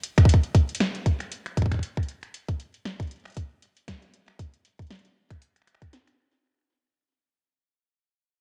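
Intricate and wistful, this short IDM excerpt moves at 117 BPM in 4/4 with a 56% swing on the sixteenths, cut from a longer piece and fading out across its 6.2 seconds. An electronic kick drum sits up front, tight and tape-warm, entering at 0.2 seconds, while an analog electro drum machine supplies finger snaps, metallic hats and a punchy snare at a lower level, both re-recorded in a large room. The production is dark, with little reverb.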